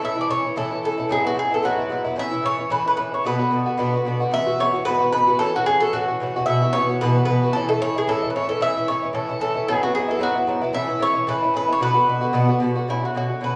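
A brisk 224 BPM pulse in 4/4 drives this Celtic folk piece, with a light swing on the eighth notes that gives it a loping, restless push. The mood is dark yet lively, with a wild edge. Across the full 13.6 seconds, an up-front acoustic mandolin carries the melody between E4 and E5, its picked double strings sounding mellow and round. Alongside it, an Irish bouzouki provides the accompaniment from G#2 to F#4, also picked on doubled strings, its tone more metallic. The harmony moves around A, Eadd9/G# and Bm, touching on A6 and Esus2/B before settling on Bmadd9. The sound has a worn, warbling cassette quality with drifting pitch, set in a wet recital-hall reverb blended with a small room, and the tuning sits slightly below standard at A4 = 438 Hz, in a passage cut from a longer piece.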